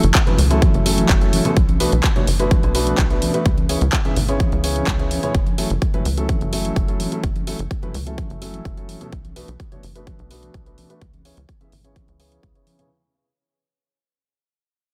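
A straight groove of punchy, overdriven electronic kick and a house kit of handclaps and bright hi-hats pumps beneath a tight, sawtooth-edged sequencer bass and intimate, up-front grand piano stabs, with audible key action, tape echo and a filter sweep, over minor seventh chords, while distant congas and woodblock sit in the background of this expansive, dreamy progressive house fragment that fades out across its 12.9 seconds.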